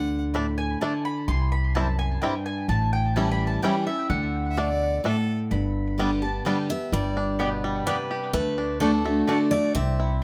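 A rustic, driving bluegrass passage in 3/4 at 128 BPM and in G major opens on a brief touch of biting, bowed fiddle over a bright, finger-squeaking jumbo acoustic guitar and a thumpy, woody upright bass. From 0.3 seconds twangy fingerpicked banjo arpeggios join, along with double-strung mandolin stabs with tape echo that lead the opening half. The fiddle returns briefly at 4.5 seconds, and at 6.7 seconds a full-bodied dreadnought guitar takes up the melody with plate reverb, all captured up close and in detail in a lightly reverberant room.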